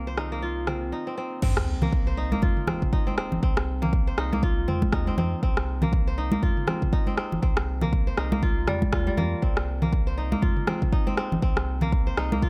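This fragment of afro house, set in C minor pentatonic on a Cm7 chord at 120 BPM with a swung 16th-note feel and tuned slightly flat to A4 = 437 Hz, opens with ringing, crisp fingerpicked kora arpeggios carrying dub echo, a round sine sub bass, both pumping with sidechain compression, and a very quiet, smooth detuned sawtooth pad with chorus. Electronic afro-pop drums with crash, rim clicks and toms come in under a filter sweep, and the pad drops away at 0.9 seconds for a short break. At 1.4 seconds the drop lands with a deep, tape-warm electronic kick placed up front, alongside an impact and a very quiet sub drop. Bright, close-miked congas played with soft hands join at 1.8 seconds and carry on with the rest of the groove. The mood is warm and spiritual, and the dry mix uses little reverb.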